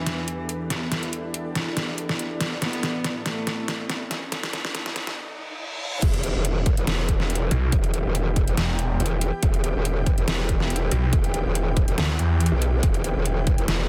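This menacing, aggressive heavy wobble dubstep clip in E minor, at 141 BPM in a half-time feel with a light swing, opens with a nasal, boxy cello, a single player carrying a short bowed melody with vibrato and delay. Beneath it, an evolving wavetable pad morphs and warbles very quietly on sustained chords, while an ethereal, airy pad with ensemble chorus and sidechain pumping floats in the background. Dubstep drums with a deep snare and metallic hats sit up front, and a drum fill, a filter sweep, a faint electronic riser and a reverse cymbal build tension as the harmony moves from Em7 to Asus2. The drop lands at 6.0 seconds on E minor, with a punchy, tape-tinged electronic kick and a saturated, growling wobble bass driven by a formant filter. At 7.5 seconds a snarling, detuned saw bass with distortion and a moving notch joins the growl until 12.5 seconds, and the whole passage comes across as a dense, heavily limited modern master.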